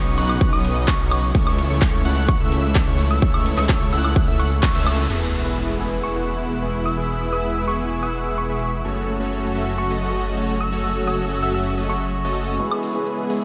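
Set to a straight 4/4 pulse, this triumphant, euphoric festival progressive house clip opens mid-drop: a punchy, overdriven electronic kick and a crisp, tape-tinged big-room kit of handclaps, hi-hat, ride, crash and woodblock drive a thick, chorused detuned saw bass, huge bright supersaw chords, a dark unison lead arpeggiating in the background, a glassy bell melody and soft-bowed strings holding sustained chords, with the strings, lead, supersaws and bass all pumping to the sidechain. At 5.1 s a very quiet sub drop and riser mark an impact as a filter sweep unfolds across the supersaw chords over the strings, bass and bell. The drums, lead and effects return at 12.6 s, the whole mix dreamy and soaked in a vast ambient reverb.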